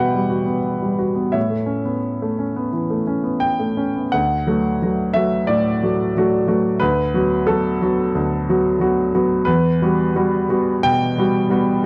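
The recording has a dry, close sound in the manner of a 1970s studio, with only a light touch of reverb. This short neoclassical minimalist piano piece, cut from a longer work, is in D major at 90 BPM in 4/4, played with a rubato feel and tuned to A4 = 443 Hz. A single grand piano carries the whole 11.9 seconds alone, its tone warm and present, sitting up front and spanning D2 to B5. The mood is intimate and hopeful, opening on Emadd9 and Aadd9 before the second section arrives at 4.1 seconds on a plain D chord. From there the harmony moves through Bm7/D and comes back to Emadd9 at 9.5 seconds.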